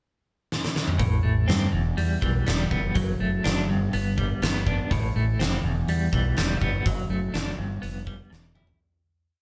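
A bright, twangy electric guitar at the edge of break-up picks tremolo-laden arpeggios from 1.0 seconds, sitting up front in this angsty, brooding quiet-loud alternative rock piece as it moves through Am, Em, D/F# and G. A huge arena drum kit with a fat snare and punchy kick opens with a fill at 0.5 seconds and lays down a big rock groove, while a growling, overdriven fingered bass drives steady eighth notes underneath. The band plays live in one room with light reverb, and the verse fades out from 6.9 seconds, closing on a final drum fill.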